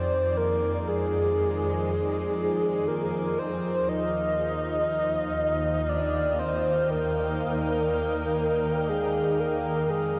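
Drenched in a vast, dark reverb, this serene, weightless ambient excerpt in 3/4 sets a breathy, flute-like synth lead up front, its melody carrying chorus, delay and vibrato, over a glassy FM pad, a bowed double bass section and a calm organ-like drone that all fade in, while a pure glass harmonica fades out in the background as the chords move from Cm11/F to Ebmaj9 at 3.9 seconds.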